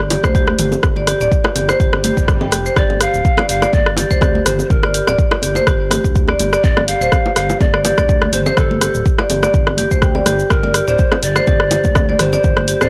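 A driving, hypnotic afro house groove at 124 BPM in 4/4 with a light 16th-note swing rides on an up-front, deep electronic kick and a layered deep house kit of hi-hat, rim click and shaker, joined by round, low-tuned bongos and damped, high-tuned congas, the congas sitting in the background. A smooth, wave-folded sawtooth synth bass with portamento and vibrato pumps against the kick on a held Dsus4, while bright hard-mallet marimba arpeggios pump too and trail tape echo. After a very quiet electronic swell at 2.1 seconds, breathy, reedy cane pan pipes with a chiffy attack carry the melody from 2.8 seconds through a gritty cassette-tape sound in a small room, in this excerpt from a longer piece.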